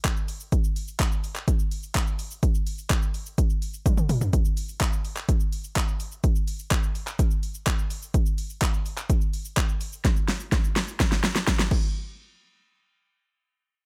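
The sound is dry, with little reverb, and a layered electronic deep house drum kit sits up front. This upbeat pop excerpt moves at 126 BPM in a straight 4/4 and has a euphoric mood. The kit combines a punchy kick, a fat snare, handclaps, hi-hat, shaker, toms and crash cymbal, all with a produced finish. A short drum fill arrives at 3.9 seconds, and a longer one runs from 10.0 seconds. The drums stop at 11.8 seconds, just before the piece moves into its next section.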